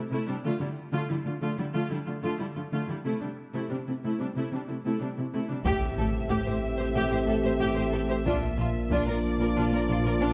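A dark, woody cello section, close and bowed with vibrato, anchors this brooding, futuristic cinematic cue at 92 BPM in A phrygian, with a rich, distant viola section providing accompaniment from the start. At 5.7 seconds the hybrid score opens up: two lush violin lines, one carrying a focused melody and the other a smooth second line, join mellow French horns and background trombones holding sustained chords. Beneath them, a deep, clean sine sub bass sits alongside a background double bass section, while a very quiet, dry taiko ensemble with heavy sticks and a faint electronic impact add weight in a moderate scoring-stage reverb.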